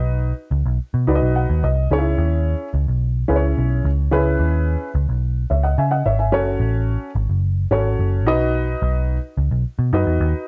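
A worn, woody upright piano and a dark, foam-muted picked electric bass, both up front in a small room, open this joyful, danceable uptempo 1960s-style soul passage, the slightly detuned piano slipping in a brief fill from 1.1 to 1.9 seconds while the round, punchy, amped bass carries the straight feel through chords moving from B to C#m, F#m and back to B.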